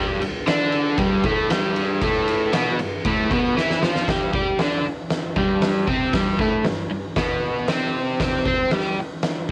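Rowdy and raw, this short excerpt of garage rock cut from a longer piece moves at 116 BPM in a straight 4/4, centred on G major and tuned slightly low to A4 = 436 Hz. An overdriven electric guitar drives the riff from the start, bright, picked and double-tracked, ranging from G2 up to C5 and sitting up front until it stops at 9.0 seconds. An oversized, low-tuned acoustic drum kit joins at 0.2 seconds with hi-hat, kick, snare and ride, its boomy kick, fat snare and dark cymbals filling a big, pumping room with saturated, gritty weight. A drum fill at 3.6 seconds carries the music into a second section, and the harmony moves from G to a C5 chord at 8.2 seconds before the drums ring out to 9.5 seconds. Both parts carry the colour of cassette tape, and the whole home recording sits in a small room with light reverb.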